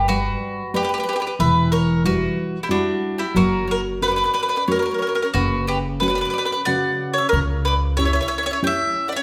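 A bright, woody mandolin carries the melody up front in this wistful, romantic Italian folk serenade, picked on its double strings in 3/4 at 91 BPM with a straight feel. Alongside it, a bowl-back mandolin plays a softer second line a little higher, its bright, picked double strings ringing beside the lead. An up-front nylon-string guitar supplies dark, full-bodied accompaniment, thumb-plucked in a deep classical voice with an audible finger squeak. A warm, woody upright bass played pizzicato on steel strings anchors the low end before dropping out at 8.2 seconds. The harmony drifts from G through Emadd9 to F#, F#sus4 and a closing C#dim, all bathed in the wet, 1.5-second reverb of a church or concert hall in this brief fragment of a longer piece.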